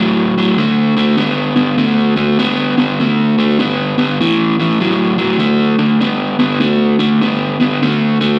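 A crunchy overdriven electric guitar carries this short blues excerpt alone, its bright, picked tone sitting up front in the sound across the full 8.4 seconds. The playing swings at 100 BPM in 4/4 in D major, with a gritty, soulful mood that suits a live club setting. The guitar stays in a low register, from A2 to B3, moving between A5 and D5 power chords, with the shift to D5 at 5.4 seconds opening a second section. The sound comes as if heard through a venue's PA, wrapped in a moderate, lush hall reverb that gives the tone a roomy tail. Cut from a longer performance, it captures a brief stretch of raw, swaggering blues guitar.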